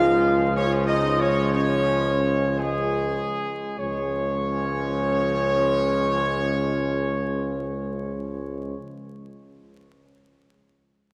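A regal, majestic classical brass chorale opens with a clear, distant trumpet section carrying the melody up front over sustained chords from mellow French horns with a smooth top and a bright, tight trombone section with light vibrato in the background, all anchored by a soft-attacked solo tuba bass, slowing down through the first 3.8 seconds before moving into a new section, bathed in a long church reverb with a vinyl crackle in this short cut from a longer piece.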